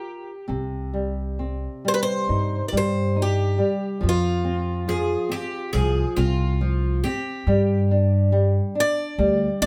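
Passionate and longing, this fado-style ballad in C minor moves with a rubato feel around 64-71 BPM in 4/4, opening on a fingerpicked flamenco guitar that is warm, up front and marked by finger squeak, alongside a picked twelve-string second line that sounds bright, boxy and octave-doubled with a swing feel until 8.5 seconds. A woody, dark upright bass on gut strings joins at 0.5 seconds with thumpy, up-front pizzicato, and at 1.9 seconds a second picked twelve-string takes the melody, full-bodied and shimmering with the heft of a jumbo body and its own octave doubling. The chords move from Cm to F5 and G5, and a moderate small-room reverb gives the ensemble an intimate space.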